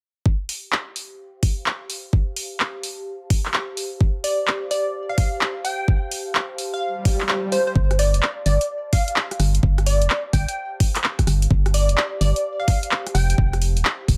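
A knocking, overdriven electronic kick opens this soulful, bouncy two-step UK garage excerpt at 128 BPM, swung on the sixteenths. It is joined almost at once by a punchy, tape-warm analog drum machine of handclaps, hi-hat and rim click, and both sit up front. A warbling, nostalgic pad drifts in underneath over a G9sus4 chord, lo-fi and mellow, with chorus, phaser and sidechain pumping. At 4.2 s a glassy, crystalline wavetable pluck carries the melody, detuned and coloured by chorus, cassette-tape grit and delay. An electronic swell sounds as the kick briefly drops out, and at 7.8 s a hollow, dark, organ-like FM bass arrives with the move to Fadd9, the harmony settling on F near the close in a dry, close mix.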